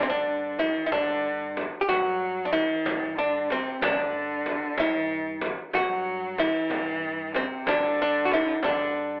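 A dark, clean archtop guitar leads this stately, passionate Persian modal piece in G dastgah chahargah, carrying the melody between C4 and G4 with a picked, compressed hollow-body tone set up front and bathed in plate reverb. Beneath it, a single bowed cello plays a second line from C3 to F#3, its rich, biting sound focused and close, with audible vibrato. An upright bass holds G2 in the background, woody and plucked on steel strings. At 0.6 seconds a deep, large frame drum joins from a distance, sounding as though in a big room, and it falls silent at 8.8 seconds. The slow 6/8 pulse moves at 62 dotted-quarter beats per minute with a straight feel, and the whole recording sits in moderate studio reverb. The sound is worn and filtered like a telephone line, with the warbly pitch drift of old cassette tape, and the clip reads as a brief cut from a longer performance.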